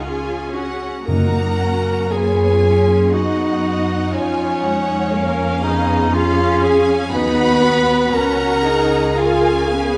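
Classical orchestral music, a tender, serene slow romantic movement in 3/4 with a flexible rubato feel, cut from a longer piece. A close, lush violin section carries the melody in the background, while a distant, expressive second violin line and a soft-attack solo clarinet enter at 0.5 s over smooth, even violas, a focused symphonic cello section and a bowed double bass section. Timpani with calf heads sound from 1.1 s to 2.6 s, and a reverberant recital hall with a softened top surrounds the ensemble.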